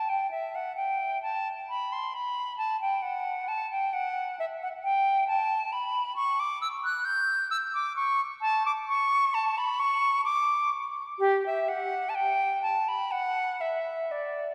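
A silver concert flute plays alone throughout, its pure, metallic tone shaded with vibrato and tongued notes as it moves between G4 and G6 in this serene, flowing baroque-style fantasia. The slow 3/4 pulse of 60-68 BPM is loosened by rubato, and the music turns from G major to D major at 5.7 s, tuned to A4 = 439 Hz. A long, wet church reverb of 3.3 s surrounds the instrument across this 14.5-second fragment cut from a longer piece.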